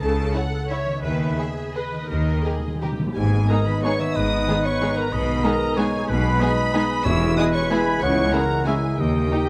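A rubato 3/4 waltz lilts between 158 and 205 BPM in this sweeping, dark orchestral ballroom piece in G# minor, cut from a longer work. A distant, rich violin section carries the bowed melody over lush violas, a ringing concert harp's arpeggios, focused double basses and a clear cello section, with softer second violins adding a smooth line in the background. Round, soft-mallet timpani fill at 2.1 seconds. An airy, hollow flute enters at 3.1 seconds, and from 3.2 seconds the second section opens out as a roomy French horn section holding chords joins the ensemble, followed by a solo oboe at 3.5 seconds, all under light reverb and close, detailed miking.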